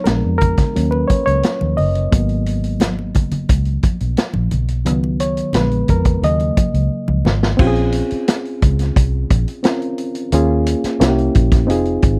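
Lush 1970s-style soul at 88 BPM, smooth and silky in G# minor, in which a reedy, worn, slightly out-of-tune electric piano with light overdrive takes the lead over a round, foam-muted fingered electric bass, a punchy vintage drum kit with dark cymbals and congas in the background, until a drum fill at 6.9 s carries the dry, close studio sound into Bb minor at 7.6 s, by which point the congas have stopped at 7.4 s.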